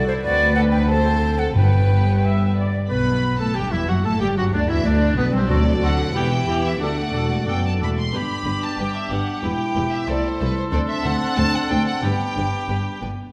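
A dark, close violin section carries the melody of this graceful, spirited classical-period orchestral movement, bowed sul tasto with light vibrato and a smooth top, while a second violin section floats alongside it in a pure, warm line. An airy, mellow silver flute with expressive vibrato plays a second line from the start, and a dusky viola section fills in the accompaniment in the background. Cellos and a distant double bass section anchor the low end, both bowed sul tasto with a floating, pure tone. A round, dry timpani stroke sounds very quietly at 1.6 seconds, and at 2.9 seconds a clear oboe, a roomy clarinet and a shadowy, distant French horn section enter, the horns holding sustained chords as the opening phrase repeats. The wet scoring-stage reverb and a layer of vinyl crackle give the short cut, taken from a longer piece, a soft, aged glow.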